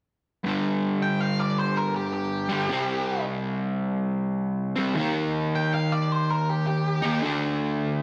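Rock with a heavy, brooding swing, where an overdriven, double-tracked semi-hollow guitar picks out a warm, hollow-bodied riff from 0.4 seconds while a dark, fuzz-drenched lead guitar carries the melody from 1.0 to 7.2 seconds through distortion and slapback echo, all set in a wet echo-chamber reverb in this short cut from a longer piece.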